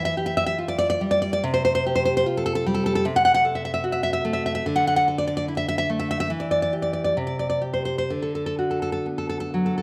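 A moderate recital-hall reverb surrounds an up-front, full-bodied nylon-string guitar, fingerpicked with a deep classical tone in this brief passage cut from a longer romantic piece. Tender and sunny in C major, the solo guitar moves in a rubato 2/4 at roughly 61-76 BPM, ranging from C3 to F#5 across the full 9.8 seconds. Its harmony drifts from Em7 through C5, Am/C and D5 to Em, Csus2 and a closing D.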